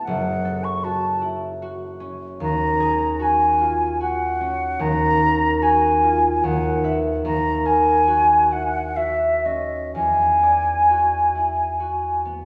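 A mellow concert flute and a fingerpicked concert harp begin together in this luminous, dreamy impressionist duo, cut from a longer piece. The flute carries the melody between D#5 and C#6 with a pure, tongued tone and expressive vibrato, while the harp's ringing acoustic accompaniment reaches from F#1 up to E5. In 3/4 with rubato, the pulse floats between 58 and 77 BPM. The harmony drifts through F#m7, D#m11, F#maj7/D# and Esus2/D# before settling on D#m7 and finally E9 at 9.9 seconds. A wet recital hall reverb surrounds the pair, heard from further back in the room, and the flute stops at 12.2 seconds as the harp rings on to 12.4 seconds.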